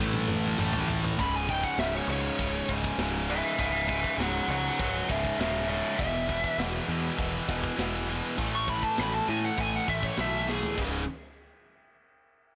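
Heavy and aggressive, this 100 BPM heavy metal excerpt in C# minor opens with a drum fill as a double-tracked high-gain guitar, an up-front high-gain distorted guitar and a tight distorted guitar in the background riff over a growling overdriven bass and a mid-forward metal kit, and at 1.2 seconds a dark, up-front high-gain lead guitar with delay takes a solo through C#m, E5 and A5 changes, all in a blown-out, overdriven small-room recording.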